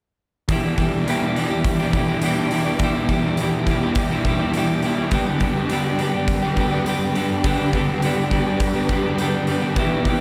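Soaked in lush hall reverb, this hazy, dreamy shoegaze and dream pop excerpt in E minor at 103 BPM sets an up-front crunchy overdriven guitar riff washed in reverse reverb against a dark, distorted fuzz guitar riff with analog chorus, while a mellow, warbling vintage organ-string ensemble holds sustained chords in the background and a big-room acoustic drum kit drives hi-hat and punchy kick through a shift from Em7 to G at 5.1 s, before a clean, compressed, direct-recorded electric guitar slips in with a brief chorused arpeggio at 9.8 s.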